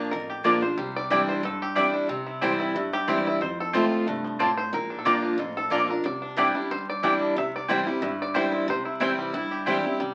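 Heard through the crackle of a very old 78 rpm record in a wet small room, this joyful, driving bluegrass piece swings along as a twangy, percussive fingerpicked banjo solo carries the melody over a bright, up-front dreadnought guitar with fresh strings and audible finger squeak, warm double-strung mandolin stabs, a dark, thumpy gut-string upright bass in the background, and a clear, biting fiddle that slips in with a second line at 9.3 seconds.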